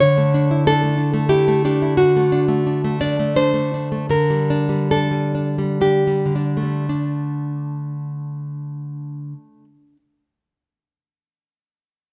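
A fingerpicked nylon-string guitar, full-bodied and up front with fresh strings, plays a wistful, melancholic romantic solo piece in 3/4 with a free rubato feel between 54 and 92 BPM, tuned to A4 = 438 Hz, slowing from 1.0 to 6.9 seconds as it moves through A/D, D7 and Gm/D before settling on D5, with the guitar sounding until 10.0 seconds in a moderate large-studio reverb.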